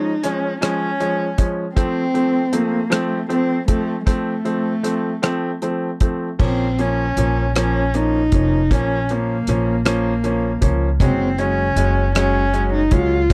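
In a slow, straight 6/8 at 52 BPM, this melancholic, aching pop ballad in Bb minor sets a dark, bowed solo cello singing with vibrato and portamento over clear, deep-bassed concert grand piano chords and a damped, airy 70s drum kit of tight kick, rim click, hi-hat and shadowy crash, with a woody pizzicato upright bass on steel strings joining at 6.4 s as the harmony turns to Bbm, the whole captured in a dry, close, 1970s-style studio sound.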